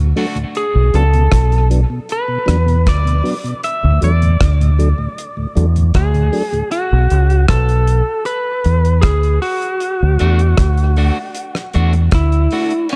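The deep, round fingered electric bass sits up front in this short dub reggae cut, anchoring a spacious, meditative groove at 78 BPM in a straight 4/4 over chords moving between D and Bm. Above it, a bright, twangy lead guitar with a touch of drive and a compressed, picked attack carries the melody from the start, its notes trailing off into dub echo. A mellow tonewheel organ with key click and a slow rotary speaker fills in the lower harmony until about 6.6 seconds, while a dry, polished 70s drum kit with a tight kick, dark cymbals, hi-hat and rim click keeps time close to the listener. A second electric guitar, picked and just at the edge of break-up, flickers briefly near the opening and returns around 10.2 seconds, bathed in spring reverb and dub echo. The overall production is dark and steeped in studio reverb, and the passage is lifted from a longer piece.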